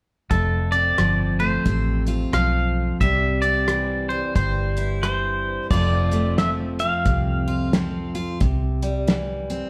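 A twangy, bright electric guitar carries the melody from 0.3 s over a full-bodied, picked dreadnought acoustic, a round, foam-muted vintage bass and a cloth-damped, thuddy drum kit with a fat snare, dark cymbals and a tight kick. This sunny, heartfelt honky-tonk country excerpt sways at 89 BPM with a swung 4/4 feel, moving between F and C. At 5.0 s a compressed, fingerpicked pedal steel enters with slide and volume swells, taking a solo turn from 5.7 s and playing until 8.1 s, all set back in a moderate large-studio reverb.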